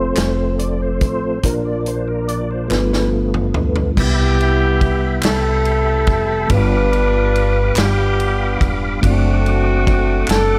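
In a straight 6/8, this slow, soulful gospel fragment opens with a clear tonewheel organ taking the lead on sustained chords through a slow rotary speaker and chorus vibrato, backed by a mellow tine electric piano, a woody pizzicato upright bass, a natural small-room drum kit with a punchy kick, and crisp handclaps set back in the mix. A drum fill from 2.7 seconds leads into the second section at 4.0 seconds, where a smooth, up-front saxophone section with light vibrato carries the melody in a reverent jazz style. Light reverb and a small room ambience frame the ensemble as the chords move from Cmaj7 to G7 and D7/F#.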